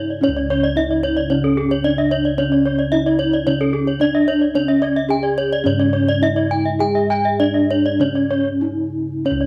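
In a straight four-beat pulse, this ceremonial, brilliant Balinese gamelan passage sets an up-front, close-miked bronze metallophone melody with shimmering paired-tuning beats over a soft, mellow lower metallophone accompaniment in the background and round, padded bossed gongs carrying the bass, while two higher metallophones struck with horn mallets spin dark, smooth arpeggios, one of them joining at 0.4 seconds, all set in a small echoing room before a brief break at 8.3 seconds.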